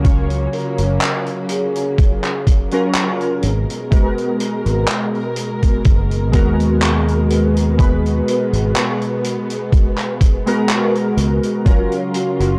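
A faded, dreamy vaporwave fragment opens with warbling, detuned lo-fi synth keys bathed in chorus and tape echo over a round, up-front fingered electric bass, a thumpy sampler-style kick, a natural vintage kit of handclaps and hi-hat, and a distant, woody string section holding lush bowed chords, while a velvety synth lead drifts in the background from 0.5 to 2.5 seconds and returns briefly at 12.1 seconds, the whole recording steeped in gritty cassette saturation and small-room ambience.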